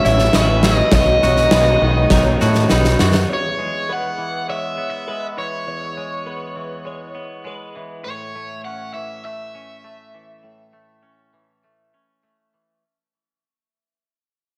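A bright, overdriven electric guitar leads this euphoric, hopeful post-rock excerpt in E major at 101 BPM, its melody set up front with digital delay. A huge arena drum kit with a punchy kick and a growling, overdriven bass drive the opening alongside very quiet, lush bowed strings, and all of them drop out around 3.3 seconds after a drum fill. Twangy clean guitar arpeggios with subtle chorus and a twangy twelve-string in the background carry the recital-hall reverb into a fade-out over E and A chords.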